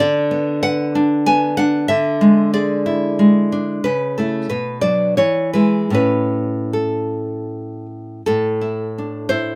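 A solo nylon-string guitar opens the piece, fingerpicked in a classical style and sitting up front in a light reverb. This romantic piece has a nostalgic, sunny mood, moving in a flexible, rubato three-beat feel that stretches and relaxes the pulse. The harmony begins on Bm/D and E7/D, then settles through A/C#, Bm and E onto A at 6.0 seconds. At 8.3 seconds a new section turns to Am, casting a wistful shade over the brighter material before the passage breaks off, as it is cut from a longer piece. The guitar's acoustic tone is warm and intimate, and the finger squeak across the strings adds a close, human touch.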